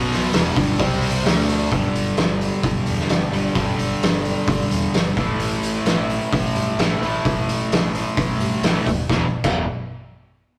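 A rough rehearsal-room recording with warm saturation and light reverb carries this angsty, dark quiet-loud alternative rock excerpt at 130 BPM in straight 4/4, where a double-tracked, compressed fuzz guitar riff sits up front over a growly, overdriven fingered bass in the background and an oversized, low-tuned, gritty acoustic drum kit with a fat snare, punchy kick and dark cymbals, moving from Em through C5, D5 and G5 to A5 before landing on E5 at 9.1 seconds.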